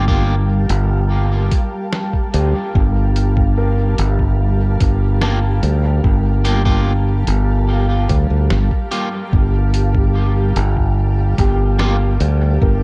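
A cloudy, detuned granular pad holds a sustained Gm7 chord from the start, joined at once by a growly, up-front fingered electric bass and a soft, felt-muted upright piano whose background arpeggios pass through a filter sweep and dub echo. Slightly broken-up electric guitar stabs, also echoed, punctuate this hazy, meditative ambient dub, while a muffled, pitched-down electronic kick thumps from 0.1 seconds. A lo-fi sampler-style kit adds compressed hi-hat and a medium-tuned snare from 0.7 seconds, all within a dry but echo-heavy mix.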